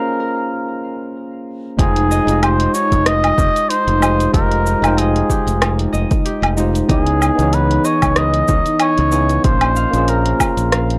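A dry, gritty hardware recording with transformer saturation frames this wistful sunset chillout excerpt in F minor at 94 BPM, its sixteenths gently swung over Bbm9, Fm9 and Dbm9 chords. A veiled, cup-muted trumpet leads up front with soft, scooped, jazz-style notes and tape echo. Beneath it sit a clean tine electric piano played through a combo amp and a ringing, fingerpicked concert harp whose arpeggios also carry tape echo. At 1.8 s a bright, direct fingered electric bass enters with a small-room deep house kit of dark hats, cabasa, rim click and woodblock, plus a punchy, layered electronic kick that drops out at 10.5 s.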